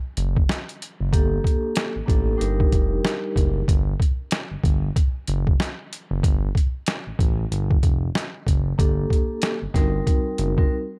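Gritty, pitched-down sampler drums with a thumpy kick and a medium-tuned snare drive this reflective yet tough boom-bap hip-hop cut at 94 BPM in G harmonic minor, while a smooth, wave-folded synth bass glides underneath with portamento and vibrato, and a mellow, ringing soft-mallet vibraphone with cassette-tape character drifts in over Gmadd9 and F13sus4 at 1.1 seconds and returns at 8.8 seconds, all in a dark, dry production.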